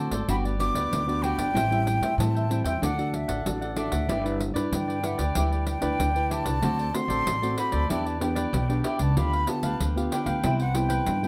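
A straight 4/4 groove at 94 BPM drives this playful, festive samba and choro passage in G major, cut from a longer piece. The pandeiro enters at 0.1 seconds with a jingly, close sound struck by hard hands, while the upright bass sits up front with a woody, thumpy pizzicato tone from gut strings. Over this, a breathy jazz flute carries the melody with vibrato, a soft attack and lifted highs, its slightly unsteady line bathed in plate reverb. The crisp, picked cavaquinho and a classical, thumb-plucked nylon-string guitar fill out the accompaniment beneath it. The harmony moves from Gmaj7 through Am7 and D to G6 in the opening section, then shifts at 6.6 seconds to a second section running D7, Em7, G7/D and Cmaj7, all set in a moderate small room.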